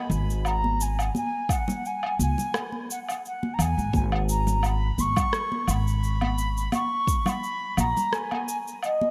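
Wistful and relaxed, this sunset chillout fragment of a longer piece swings gently in 4/4, with a reedy, tongued baroque flute carrying the melody with vibrato and delay over a woody, thumpy pizzicato upright bass, electronic cabasa, woodblock and rim click with gated reverb, soft-handed congas and a deep electronic kick drum that enters at 1.5 s, all set in a lush hall reverb with a bright 1980s-style digital sheen.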